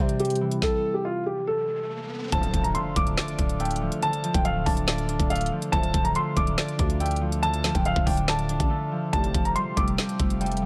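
A worn, mellow grand piano carries the melancholic, eerie melody of this half-time trap excerpt at 141 BPM in D minor, over ringing fingerpicked harp, a growling, buzzy 808-style bass, crisp-hatted trap drums with a knocking kick, woody snare and 12-bit sampler grit, a reedy harmonium entering at 2.3 seconds alongside distant brass stabs, and a background riser and impact, all in a small room ambience.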